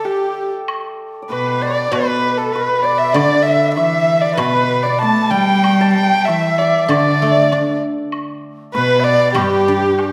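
Pastoral and graceful, this Chinese traditional chamber passage, cut from a longer piece, moves in a rubato 2/4 around 97 BPM in a G gong mode. An intimate, up-front erhu carries the melody with vibrato, portamento and an airy bow, while a reedy bamboo dizi with a buzzing membrane sits in the background and a shimmering hammered dulcimer shares the upper line. A silvery guzheng rings beneath, a dark-toned woodblock taps far back, and a smooth, rich cello joins at 1.3 seconds, all set in a wet recital-hall reverb.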